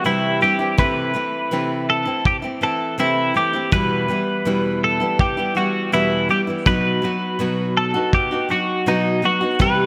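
A bright, 1980s-style digital production sets this short acoustic pop excerpt in a lush hall reverb, with a touch of small-room ambience underneath. At 82 BPM in a straight 4/4, the mood is tender and reflective as the harmony moves from C through Am/C and Em to B. A clean, twangy twelve-string electric guitar carries the melody up front, picked and compressed, with a subtle chorus and delay. Beneath it, a fingerpicked classical nylon-string guitar plays the accompaniment, its finger squeaks clearly audible. A muffled, gritty kick drum enters at 0.8 seconds, tight and saturated, with a rolled-off top and a lo-fi character.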